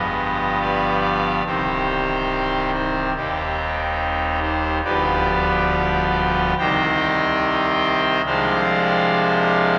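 A solo pipe organ sounds from the opening moment, its trumpet stop giving a brassy, bright voice that sits up front. This is a dark, solemn chorale in C minor, moving at about 71 BPM in 4/4 with a flexible, rubato feel, and the instrument is tuned to A4 = 442 Hz. The romantic voicing spans from a deep C1 up to G5. The harmony opens on G7 and settles onto C minor, then passes through Cm/Eb and G7/D before returning to C minor at 6.6 seconds and ending on Dm7b5 over C. A long church reverb of about 3.4 seconds surrounds the organ with a resonant, wet acoustic, and this 9.8-second passage is cut from a longer piece.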